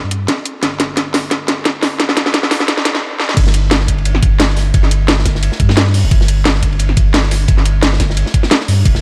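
Dark, warm production with a light reverb gives this excerpt of liquid drum and bass a dreamy feel, with a gentle swing in its sixteenths. A round, sine-like sub bass sits up front from the start, deep and mellow with a fast attack and long sustained notes. A layered electronic drum kit, also up front, brings a cracking snare, metallic hats and crash cymbal, joined by a knocking, tape-warm electronic kick that carries a high-pass filter on both the kick and its small-room sound. Drum fills drive a build-up that halts in a brief stop at 3.0 seconds. At 3.4 seconds the drop lands and a quieter, gritty breakbeat kit slips in underneath, with dark cymbals, a medium-tuned snare, hi-hat and ride, its rolled-off top thinned further by high-pass filtering on the cymbals, hats, snare and room.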